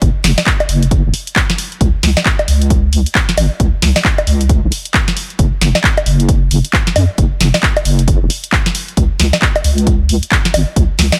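A dry mix opens this soulful, skippy UK garage excerpt in two-step style at 134 BPM with a 61% swing on the sixteenths, where a deep, dark wobble bass with detuned square and sine tones, chorus and sidechain pumping sits up front beside a tape-warm electronic kick drum and a punchy analog drum machine of bongos, handclaps, hi-hat and snare drum, the drums re-recorded in a large room.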